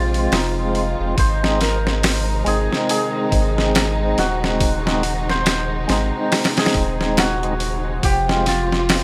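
Melancholic and cinematic, this short trip hop cut at 70 BPM with a swung 16th feel sets a shimmering, hammered santur melody with tape echo over a fat, lightly overdriven tonewheel organ with tremolo that stops at 8.5 seconds, lush bowed strings with vibrato and portamento, a deep, round analog bass up front, a very quiet flickering granular haze, and a gritty, pitched-down boom bap kit with a thumpy kick entering at 0.1 seconds, all moving from Fm to G# and back to Fm in a dry, close sound.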